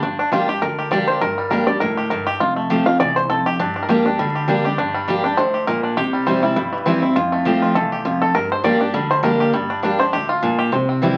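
Rustic and lonesome, this short bluegrass excerpt, cut from a longer piece, races along at 202 BPM in 4/4 with a light swing on the eighth notes, set in G dorian. A five-string banjo, played with fingerpicks, carries the melody as a solo across the full 11.2 seconds, its twangy, percussive voice sitting up front. A picked steel-string dreadnought guitar shares the foreground with a full-bodied accompaniment, while an upright bass with gut strings thumps pizzicato in the background, woody and dark. The harmony moves from Gm to F, back to Gm, then through C and F before returning to Gm, with the opening phrase beginning again at 9.5 seconds. The sound comes from a very old 78 rpm record, vinyl crackle and all, heard through a wet club reverb.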